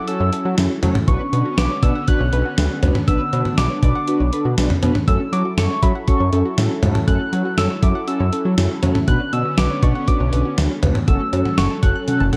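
An up-front, gated 80s digital drum machine drives this cool synth-pop excerpt, its thumpy kick, gated-reverb snare, hi-hat, cowbell and toms carrying a tape-softened, sampled character, with a drum fill arriving at 12.1 seconds. Beneath it, a fat analog bass sits just as close, thick and nasal with a saturated, detuned sawtooth edge and a plucky filter snap. A mellow synth brass plays dark, round accompaniment with chorus and vibrato, while a soft struck synth lead carries the melody in a gentle, keys-like FM tone that decays, touched by chorus and slapback echo. Farther back, a lush unison pad holds airy sustained chords through chorus and phaser, and a soft round pluck traces arpeggios with chorus and slapback echo. A barely audible downlifter opens the passage over a minor-key progression, all set in a dark production with light reverb and a driving, straight feel.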